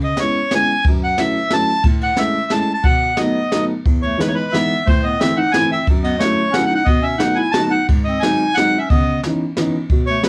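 This musette waltz moves at a brisk 179 BPM in 3/4 with a straight feel, and its mood is bittersweet and nostalgic. A reedy, airy accordion carries the melody up front, while a dark, woody, boxy upright piano supplies the accompaniment in its lower register. A jazz kit played with brushes sits close as well, with a high-tuned snare, dark cymbals and a boomy kick in a small-room acoustic. At 3.2 seconds a mellow clarinet joins with a distant, roomy second line in jazz style, its subtone colored by light vibrato and scooped notes. The chords wander from C#m7 through Amaj7 and Emaj7 to a closing C#m9, and the whole piece has the soft haze of a home cassette recording with light reverb, cut from a longer performance.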